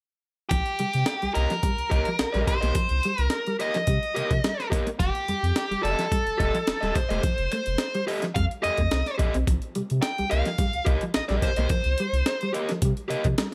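Hypnotic and cool, this funk excerpt in C dorian moves at 107 BPM in a straight 4/4, cycling from Cm7 to F9 at 5.0 seconds and back to Cm7 at 9.5 seconds. A gritty, compressed breakbeat sampler-style drum kit sits up front with a thumpy kick, a medium-tuned snare and hi-hat, while a saturated sub bass adds a deep, thick, triangle-like tone with a fast attack and long sustain. Up front as well, a nasal lead guitar with a parked wah carries the melody between G4 and G5, its dark, picked tone pushed through overdrive. Beneath it, a mellow, fingered electric guitar plays a clean, compressed riff in a low register, bathed in spring reverb, and a crunchy, picked overdriven guitar joins at 1.3 seconds with accompaniment in a higher range. The whole groove sits in a digital ambience that lends the parts a shared sense of space.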